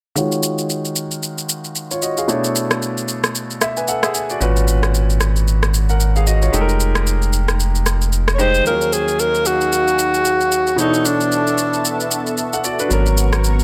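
A clear, intimate concert grand piano opens this deep, late-night amapiano piece at 113 BPM with a swung 16th-note feel, its low-pass filter sweeping over minor eleventh chords while an electronic shaker and rim click sit up front, and after a piano fill a thick, saturated sub bass enters at 4.4 s. A breathy, whispered alto saxophone carries a solo melody with delay from 8.3 s, and an airy, detuned sawtooth pad with chorus and phaser holds sustained chords from 8.7 s, as the bass drops out before returning for the final moments. A light, small-room reverb gives the mix a close space.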